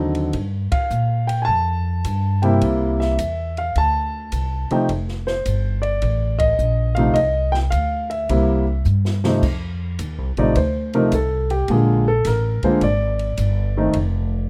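Playful and relaxed, this short jazz piano trio fragment swings at 106 BPM in F mixolydian, moving through Gm7, C7 and F7 before settling on F and Bb7. An intimate concert grand with audible action noise, deep bass and long sustain carries the melody up front, beside a woody, growly pizzicato upright bass on steel strings, while a small-room acoustic kit with dark cymbals, a medium-tuned snare and boomy kick sits further back. After band accents, a drum fill at 8.9 seconds leads into a piano solo from 9.4 seconds, all in a rough home-demo mix with light reverb.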